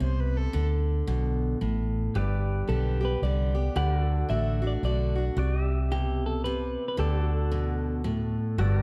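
A twangy, compressed clean electric guitar carries the melody from 2.7 s over a round, foam-muted electric bass up front and a bright, full-bodied dreadnought acoustic guitar, with a clear fiddle sounding only briefly at the start and a fingerpicked pedal steel guitar adding sustained chords with volume swells from 2.2 s, giving this sunny, down-home honky-tonk and classic country excerpt in swung 3/4 at 112 BPM a dark, warm production in a moderate recital-hall reverb.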